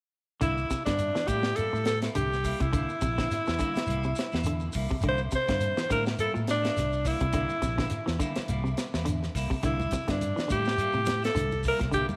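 Afrobeat with a funky, joyful swing, this excerpt from a longer piece features a raspy, gritty alto saxophone carrying the melody up front with light vibrato and a slapback echo. Beneath it, two clean, picked semi-hollow guitars with spring reverb play bright arpeggios and warmer stabs over a C7 chord, anchored by a dark, round fingered bass and a tight, polished funk kit with a high-tuned snare. A grainy shekere sits in the background throughout, thick-skinned congas join at 9.6 s, and an echo chamber adds a moderate sense of space.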